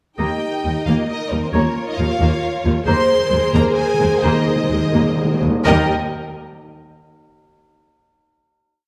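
Set in a lush scoring-stage reverb, this short, complete heroic adventure cue in 3/4 and E-flat mixolydian soars at 124-135 BPM. A clear studio violin section carries the melody, doubling the tune at the octave, over a focused symphonic violin section, a background oboe and silvery airy flute playing sustained and short accented chords, and warm French horns holding sustained chords. Violas drive a rhythmic ostinato, cellos and double basses hold a deep bowed bass line, and hard-mallet timpani enter at 2.9 seconds with articulate, dry rolls as the tempo slows, settling onto a final E-flat chord at 5.7 seconds.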